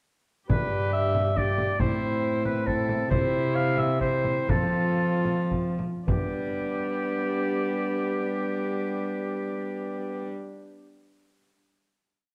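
An up-front oboe with light vibrato carries the melody of this short, courtly and festive renaissance-style consort dance in triple metre, heard in a wet recital hall with a warm production. A bowed viola with gut-string tone and a dark bassoon play chords in the rhythm of the tune, while a rich, nasal cello holds a sustained bass and a deep frame drum, played close with soft hands, keeps a dance rhythm until 6.3 seconds. The music slows from 2.5 seconds and arrives on a final G chord at 6.1 seconds, which the winds and strings hold to the end.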